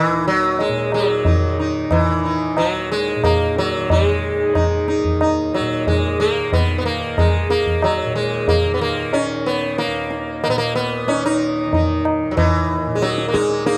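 Hindustani classical music in raga bhairavi on Eb, this meditative, introspective passage, cut from a longer piece, moves at 92 BPM in a straight 4/4, tuned to A4 = 439 Hz. A plectrum-plucked sitar carries the melody up front, its buzzing tone shimmering with sympathetic strings. Beneath it, a softly plucked tanpura holds a warm, buzzing, shimmering drone, and low-tuned tabla with a short ring and small-room sound enters at 0.6 s, all captured in a dry, close 1970s-style studio recording.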